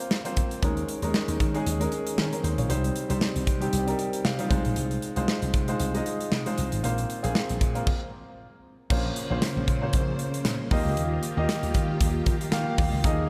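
A clear, open concert grand piano opens this uplifting, nostalgic 1980s-style pop excerpt with a lightly swung feel, quickly joined by an up-front acoustic drum kit with a punchy kick and a bright, amped slap bass. The piano adds a fill around 4.0 seconds, and after a stop near 7.9 seconds a lush, vintage string machine enters at 8.9 seconds with slow-attack, sustained chords thickened by ensemble chorus. A moderate concert hall reverb gives the whole a spacious sheen as the harmony shifts from suspended chords toward a brighter closing add9 colour.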